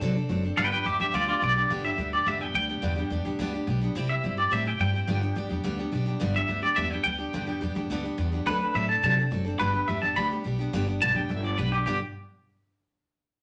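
Rowdy and upbeat, this rock excerpt rides on a full-bodied, picked steel-string acoustic guitar picking out the chords and a woody, thumpy pizzicato upright bass from the very start. At 0.6 s a twangy, compressed electric guitar with tremolo jumps in up front to carry the melody high above, moving over a simple D7, G and C progression. A moderate studio reverb gives the trio a lively room sound, and the clip ends on a G5 at 11.9 s.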